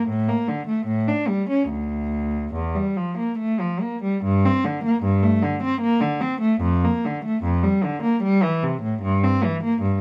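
In a flowing 3/4 with free rubato, this grave, baroque-style classical suite movement, cut from a longer piece, features a single unaccompanied cello played up front by one bowed player with a rich, reedy gut-string tone in period style, ranging from D2 to D4 across the full 10 seconds under light reverb.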